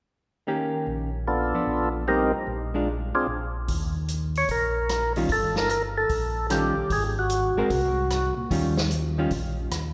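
A long, wet church reverb hangs over this short cut from a greasy, soulful soul jazz organ trio, which swings in 4/4 at 149 BPM in Eb mixolydian. A dark, clean hollow-body electric guitar opens the accompaniment at 0.5 seconds, and a mellow, round tonewheel organ soon takes the bass line, colored by chorus vibrato and a slow rotary speaker. The melody arrives on a second tonewheel organ, full and up front, with second-harmonic percussion, audible key click and its own slow rotary speaker. At 3.7 seconds an acoustic vintage drum kit joins with a punchy kick, a medium-tuned snare, hi-hat and rim clicks, just as the harmony settles from a moving Eb7, Dm6, Cm7, Bb7 progression onto Eb. The second half leans on Ab9 before resolving to Eb9, and the lead organ falls silent at 8.3 seconds while the others carry on.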